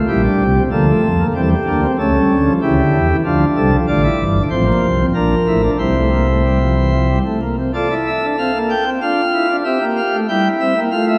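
A solo pipe organ opens on light, sparkling flute stops, voiced in a bright, romantic manner and placed up front, as this solemn, serious baroque-style four-part fugue unfolds at 94 BPM in a straight 3/4. The harmony moves through shadowed chords before settling into F major at 3.9 s, with the organ spanning from deep pedal notes to a high treble across this brief fragment cut from a longer piece. A long, wet church reverb surrounds the instrument, and a vinyl crackle lends the recording an aged patina.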